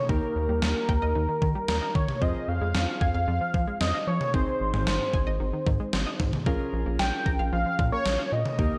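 A gated 80s digital drum machine drives a straight, steady 4/4 groove, its thumpy kick, toms and overdriven, gated-reverb snare sitting up front, re-recorded in a small room. This is cool, driving synth-pop, a short cut from a longer piece that stays in one section for its full 8.8 seconds. A rubbery, hollow square bass bounces beneath the beat with a dark, resonant filter pluck. The octave-doubled lead carries the melody up front, bold and retro yet mellow, with vibrato, chorus and phaser. Round analog keys with a filter sweep fill the accompaniment under chorus. A bright analog pluck spins arpeggios in the background through chorus and analog delay over the chords Eb, Fm, Ab and Bbm7, all inside a light reverb.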